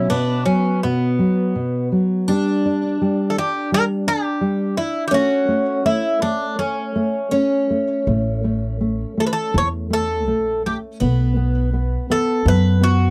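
A loose, rubato pulse around 83 BPM in 4/4 carries this mournful, passionate fado-style ballad, cut from a longer piece and tuned slightly above standard pitch. A Greek bouzouki sits up front with the melody, its metallic double strings, some doubled at the octave, ringing through a close, dry 1970s-style studio sound touched by light reverb. Beneath it, a picked twelve-string acoustic guitar adds a shimmering second line with fresh, boxy parlour tone, audible finger squeak and a tape echo. A full-bodied nylon-string guitar, thumb-plucked with a deep classical voice, supplies the accompaniment through a progression moving from Bsus2 to G5, A and B5. At 8.1 seconds an upright bass joins, its woody, thumpy gut-string pizzicato dark and prominent until the fragment ends at 13.1 seconds.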